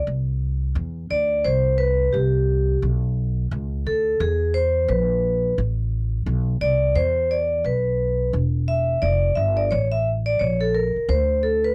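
A lazy swing on the sixteenths in 4/4 gives this smooth, warm jazz-hop excerpt its head-nodding sway, with chords drifting from Csus2 through Bm, Em7 and A before settling on Amadd9. Up front, a metallic, ringing vibraphone struck with medium hard mallets, its motor off, takes a solo from 0.1 seconds to the end, while a woody, growly pizzicato upright bass on steel strings anchors the low end throughout. The sound is dry and close, like a 1970s studio session with little or hardly any reverb.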